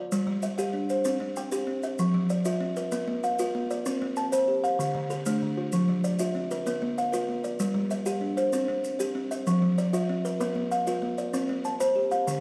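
Rolling in a straight 12/8 lilt, this hypnotic southern African traditional piece builds an mbira-style interlocking cycle from two buzzing kalimbas playing arpeggios. The first sits up front from the opening moment with a short, woody, thumb-plucked tone and a vintage, band-limited color, while the second joins at 0.3 seconds with a brighter, ringing thumbnail pluck from a hollow box. Grainy, mellow maracas sit low beneath them, and a recital hall reverb gives the production a dark, warm glow.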